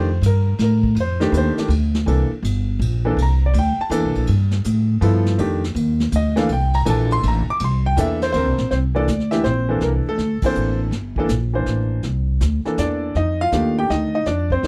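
This dry, close recording has the intimate feel of a 1970s studio session, with the players heard up close and very little room sound. It is a swinging, relaxed jazz piano trio cut in 3/4 at 162 BPM, with a lilting swing on the eighth notes and a C mixolydian colour built on rich thirteenth chords such as F13, C13 and G13. The clear, slightly worn concert grand carries the melody up front, its short sustain and deep low end giving each phrase a crisp, natural character, and it takes a solo over the first 8.7 seconds. The upright bass sits just as forward, its plucked steel strings sounding woody and growly down in its low register. Brushes on a vintage kit stay further back in the mix, blending a medium-tuned snare, punchy kick, hi-hat and dark ride and crash cymbals in a natural studio room. The second passage brings a band accent at 10.4 seconds before the harmony settles back on F13 at 13.1 seconds as the clip ends.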